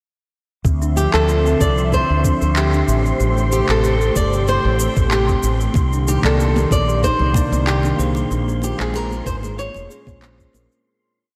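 Wistful and smooth, this short sunset chillout piece in D minor moves at 94 BPM with a lightly swung groove, its chords drifting from Dm9 through Am7 and Cm9 to Bbm9 before a fade-out from 7.5 seconds. A soft, tape-warm electronic kick and a light lounge beat of shaker and handclaps sit under a round, punchy fretless bass up front, while an airy, breathy pad with chorus holds sustained chords, a woody kalimba rings out delayed arpeggios in the background, and a dark wind-like noise texture holds a high note. A fingerpicked flamenco guitar carries motif-based phrases with audible finger squeak, joined at 5.7 seconds by soft-handed congas and at 6.2 seconds by bell-like electric piano stabs, all set in a dreamy, reverb-soaked hall.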